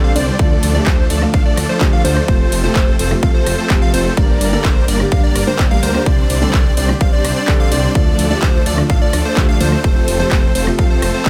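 A dry mix with little reverb carries this uplifting, anthemic festival progressive house cut at 127 BPM in F major, where an overdriven, punchy electronic kick sits up front from 0.4 s. Huge, lush supersaw chords and a thick, beating detuned saw bass pump under sidechain, joined by a big-room dance kit with metallic hats, handclaps, ride cymbal and rim click. A catchy, evolving plucky unison lead plays arpeggios with a filter sweep, while a soft, felt-muted upright piano with audible action noise murmurs in the background through tape echo over a Dm, F, Gm, Csus2 progression.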